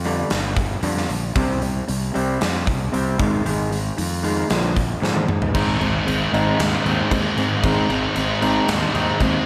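A big arena sound soaked in concert hall reverb frames this brooding, dark quiet-loud alternative rock excerpt at 115 BPM in straight 4/4, where a twangy, slightly broken-up electric guitar through a small old amp plays arpeggios with spring reverb and slapback echo over a growly fuzz bass and a punchy, up-front rock drum kit moving through Gm, C5, Ab5 and Bb, until a drum fill at 5.0 seconds ushers in a thick, distorted fuzz guitar riff at 5.5 seconds on Ab.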